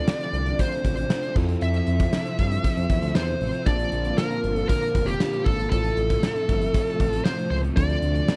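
Uplifting and romantic, this short cut from a longer 1980s-style pop piece moves at 117 BPM in F major, with a picked, high-gain lead guitar carrying the melody up front through distortion and slapback echo while a gated drum kit with a fat snare, tight kick, bright cymbals and tambourine drives from 0.1 seconds. Underneath, a smooth, mellow synth bass enters at 0.3 seconds, a bell-like tine electric piano and a silky string machine with ensemble chorus sit in the background, and a very quiet, crunchy overdriven guitar adds texture. The chords move from Dm7 through Fmaj7 and Bbmaj7 and back, in a dry mix.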